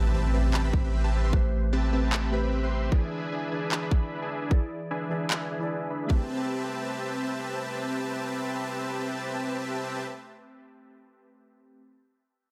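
Future bass with a bittersweet, lush, half-time feel, cut from a longer piece, where a huge, detuned supersaw riff under a filter sweep and glassy, chorused digital keys pump with sidechain and dub echo over Am9 and E7 chords, a deep, mellow 808-style bass holds until 2.9 seconds, a barely audible impact opens, and up-front electronic handclaps play until 5.4 seconds while a hard-clipped kick drum plays until 6.2 seconds, all in a light reverb.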